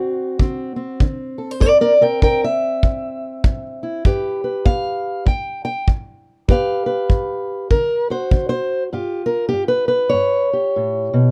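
A fingerpicked steel-string acoustic guitar sits up front, its boxy, parlour-sized tone carrying the melody through this soulful, gritty slice of acoustic country blues, cut from a longer piece. The guitar takes a solo from the start, moving over dominant-seventh changes from D7 to C7 and G7, with a brief break from the chords before returning to G7 and D. A punchy, airy kick drum, also up front and played with brushes, comes in at 0.4 seconds and drops out at 8.5 seconds. The solo runs until 8.9 seconds, where a new section begins and the guitar carries on by itself over G7. The groove has a relaxed swing in common time. Light reverb and a dusky, mellow production lend the recording an intimate, worn character.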